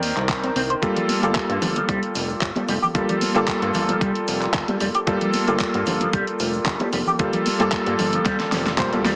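A straight nu-disco groove with a sleek, sensual mood is driven by a thumpy sampled kick and an overdriven pop kit of fat snare, handclaps, hi-hat and toms, ending in a drum fill at 8.3 seconds, while a clangy, up-front electric grand piano with analog delay moves between Cm9 and Gm9 over a glossy, chorused pulse-and-sawtooth synth bass; a twangy envelope-filtered guitar riff with lush chorus and 12-bit grit sits in the background alongside bright, hard-handed cabasa, congas and bongos, all bathed in plate reverb and squeezed into a heavily compressed, small-speaker radio sound in this short cut from a longer piece.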